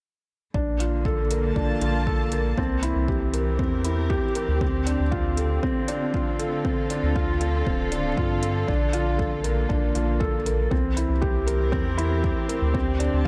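A steady, straight 4/4 pulse at 118 BPM drives this moving, intimate piano and strings electronica, cut from a longer piece. A punchy, overdriven electronic kick and a metallic, overdriven hi-hat (entering at 0.8 seconds) join a round, deep analog bass with sidechain pumping, while an up-front, felt-muted upright piano plays a soft riff with audible action noise and delay. A warm studio string section holds bowed sul tasto chords with vibrato through Bbmaj7, C7 and Dm7, all set in light reverb and studio ambience.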